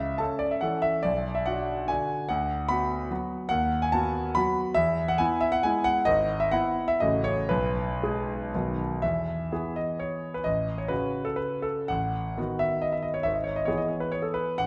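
Classical romantic piano music, this is a proud, graceful triple-time dance in 3/4, moving with dotted rhythms and a flexible rubato that lets the tempo drift between 109 and 155 BPM. A solo concert grand carries everything across the 14.7-second fragment, cut from a longer piece, ranging from a deep G#1 in the bass up to B5. The instrument sounds intimate and natural, placed up front with its action noise clearly audible beneath the notes. The harmony opens on A/C# and Bm before settling into E major around 3.5 s by way of B7/D#. A new phrase begins at 9.0 s, returning to E and passing through F#m/A and B7/A toward E/G#. A moderate concert hall reverb with a 1.9-second decay gives the playing a sense of space around it.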